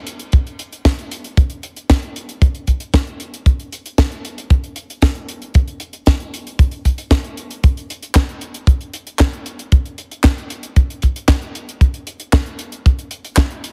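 Danceable and nostalgic, this short italo disco excerpt rides a straight 4/4 groove carried entirely by drums. A tight funk kit with a high-tuned snare, handclaps and hi-hat sits up front beside a polished, tight kick that enters at 0.3 seconds, both dry and airy with only a small room's ambience. The overall sound is heavily compressed, with a radio-like squeeze and little reverb.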